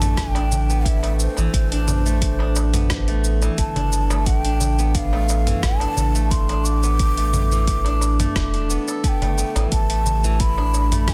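A round, deep analog bass sits up front with sidechain pumping in this hypnotic organic downtempo excerpt, while a breathy, hollow ney carries the melody through digital delay over ringing, silvery steel-string zither arpeggios played with fingerpicks. A gritty, overdriven sampler-style kit of hi-hat, rim click, shaker and toms, with soft clipping on the snare, is joined by a layered electronic kick and a crisp, small metal-shell darbuka in the background. A very quiet, warbling tape-like pad with chorus enters on sustained chords at 10.2 s, all within a dense, heavily limited modern master.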